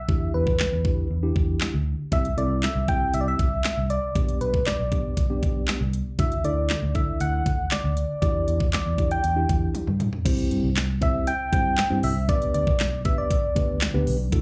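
Upbeat and euphoric, this dance-pop clip, heard live through a club's PA, sets a round, gentle FM synth lead with chorus and slapback echo over a mellow tine electric piano and a dark, foam-muted fingered bass that both pump against the kick, while an up-front electronic pop kit of knocking kick, fat snare, crisp hats, handclaps, crash and toms plays a fill from 9.7 to 10.3 seconds into a new section.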